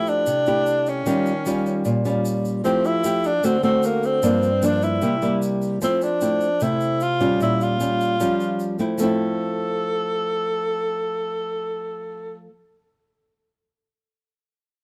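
Bossa nova at 151 BPM in F major, relaxed and sunny, this short passage cut from a longer piece sets a breathy tenor saxophone out front, playing a mellow jazz-style solo melody in subtone with light vibrato, scooped notes and a plate reverb sheen. An intimate fingerpicked nylon-string guitar sits equally close, moving through Fmaj9, Eb9, D7, Gm7, C7 and a Bbm6 turn, while a grainy, bright egg shaker ticks quietly in the background until 9.1 s. The dark production wraps the trio in a moderate studio reverb.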